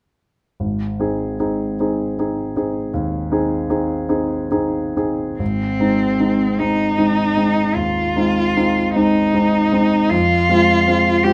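In a lilting 12/8 with free rubato, the pulse moves at about 43-54 BPM in dotted quarters, giving this romantic classical duo a serene, lyrical sway. A clear concert grand piano opens at 0.6 s on an Ab major chord and plays accompaniment throughout, its natural tone reaching a deep bass from Ab1 up to Ab4. At 5.4 s a single bowed cello enters with the melody, singing warmly between C4 and G4 with expressive vibrato and portamento. Both instruments sit up front at an even level, though the cello also carries a slightly distant quality, and a moderate large-studio reverb surrounds the duo. The harmony turns to F minor at 10.1 s before this passage, cut from a longer piece, ends at 11.3 s.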